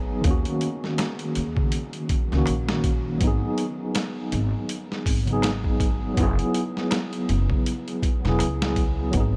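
Soaked in a huge, dreamy ambient reverb, this melancholic, cinematic trip hop excerpt at 81 BPM with a swung 16th feel sets an up-front, mellow tine electric piano, colored by tremolo, 12-bit sampler grit and tape echo, over a woody pizzicato upright bass on gut strings and a compressed, pitched-down boom bap sampler-style drum kit with a thumpy kick and medium-tuned snare, while a crisp metal-shell darbuka sits very quietly from 1.0 to 8.6 seconds beneath chords moving from D#m7 through G#m7 to F#9sus4.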